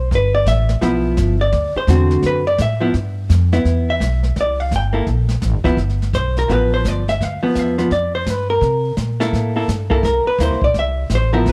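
A hollow-body electric guitar and upright bass open together, setting up a playful, relaxed small-group swing and bop groove in a lilting swung feel. The guitar sits up front as accompaniment, its clean, picked tone dark and compressed with the soft grain of cassette tape, moving through rich thirteenth and sixth chords. Close beside it, the pizzicato upright bass sounds woody and thumpy, its steel strings giving a dark low end. Brushed drums join at 0.1 seconds a little further back, airy and polished, with a medium-tuned snare, hi-hat and a boomy kick in a small-room ambience. Light reverb and the homemade cassette character lend the whole passage an intimate feel, as if lifted from a longer performance.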